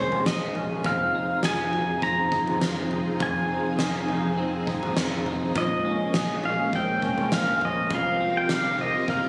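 Haunting and ethereal, this dream pop excerpt in F minor drifts at 102 BPM, with an up-front pedal steel guitar singing the melody in slide and volume swells through digital delay, over shimmering sawtooth string-machine violins with a slow attack, twangy chorused and delayed clean electric guitar arpeggios, a dark foam-muted fingered bass, and an oversized low-tuned drum kit with a boomy kick and fat snare that lands a fill at 9.1 seconds, all bathed in lush hall reverb and heard as if captured on a phone in the room, with a club reverb.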